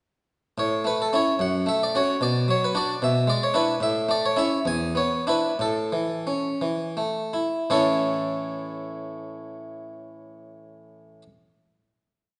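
A round, plucked Flemish-style harpsichord on a single set of strings sits up front in a wet recital-hall reverb, playing this serene, flowing baroque-style suite movement in A major and 6/8 at a rubato 54-76 BPM: a single-line melody rides rocking broken chords, slows from 3.0 seconds, and settles on a final chord at 7.7 seconds that rings until the harpsichord falls silent at 11.2 seconds.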